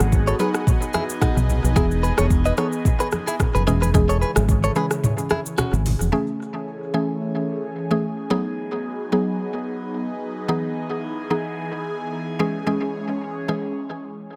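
Afrobeats with a romantic, joyful glow, cut from a longer piece and set in an echo-heavy mix with light digital ambience. A deep-kicked electronic drum kit with metallic hats and tape echo, a round, punchy fingered electric bass, soft-handed congas in the background and a bright, compressed clean guitar riff with tape echo drive the opening. The guitar bows out at 5.7 seconds, and the rest drop out at 6.1 seconds after a short break. A woody, mallet-like synth pluck treated with chorus, phaser and tape echo carries on over a breathy, detuned pad with slow attack and long release through the chord changes.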